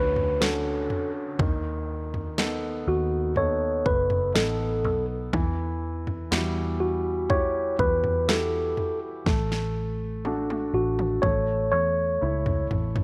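A mellow tine electric piano carries the melody of this tender, hopeful pop ballad excerpt in D major at 61 BPM, over a warm concert grand piano with deep bass and long sustain, a dark, round, foam-muted electric bass, and a downlifter in the background until 5.3 seconds. From 0.2 seconds a layered, electronic pop drum kit with a punchy kick, fat snare and toms sits up front in straight 4/4, playing a drum fill from 9.3 seconds. The clean electric piano line carries a slapback echo, and the mix sits in light reverb and digital ambience as the chords move from Dmaj7 through B7/D# and Emadd9 to D/A and A.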